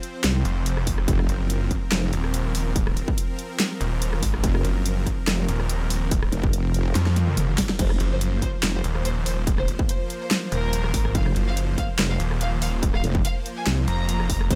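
Heavy and menacing, this excerpt of wobble dubstep runs at 143 BPM in 4/4 with a half-time feel and a light swing on the sixteenths, built around an F5 chord. A detuned supersaw pad holds lush sustained chords under sidechain pumping, while a layered dubstep kit with a huge snare, bright hats, handclaps, rim clicks, toms and crash sits up front in a small room, joined from 0.9 seconds by a distorted, tape-warm electronic kick. Two basses dominate the low end: a wobbling, chorused sawtooth bass with a mellow, saturated body, and a snarling distorted saw bass whose growling tone sweeps through a moving notch. A drum fill at 7.0 seconds leads into the entry of a symphonic violin section at 7.8 seconds, its bowed ensemble line carrying vibrato and a smooth top, trailed by digital delay. The mix is dense and aggressive, wrapped in digital ambience, with the basses and drums pushed forward over the pad and strings.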